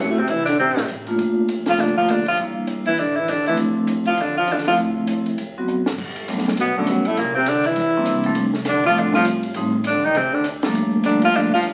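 Heard through the crackle of a very old 78 rpm record, this moody, cool stretch of small-group swing and bop sits in a moderate large studio reverb and is cut from a longer piece. A clear tenor saxophone leads the melody up front, its vintage tone carrying light vibrato and scooped notes. Beneath it, a dark baritone saxophone with a smooth top plays a second line, while a ringing, metallic vibraphone struck with medium hard mallets and shimmering with medium motor vibrato supplies up-front accompaniment. A woody, growly upright bass, plucked on steel strings, stays in the background, and a dry compact cocktail drum kit with dark cymbals, a high-tuned snare and a punchy kick enters at 0.3 seconds. A drum fill at 5.7 seconds leads into a new section at 6.0 seconds, as the harmony moves through rich jazz chords such as Gm9, Gmaj9 and F69.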